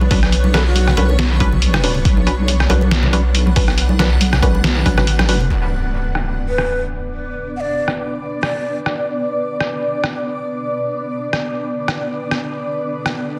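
Deep dubstep in B minor at 139 BPM with a swung, half-time feel, this brooding, cavernous excerpt opens on a drop where a deep, wobbling bass, an overdriven kick and muted, chorused dub chord stabs with echo sit over background congas and bongos and a gritty, pitched-down sampler-style kit whose snare stays up front. A breathy, vibrato-laden ney with 12-bit grit and dub echo appears briefly at 0.5 seconds, and the kick drops out just before an electronic impact at 5.5 seconds, when the bass, stabs and hand drums stop. From there a blurred, granular cloud pad, present from the start, carries sustained chords as a filter sweep moves across it, the kit continues, and the ney returns for an expressive phrase from 6.5 to 8.7 seconds in a dense, heavily limited master.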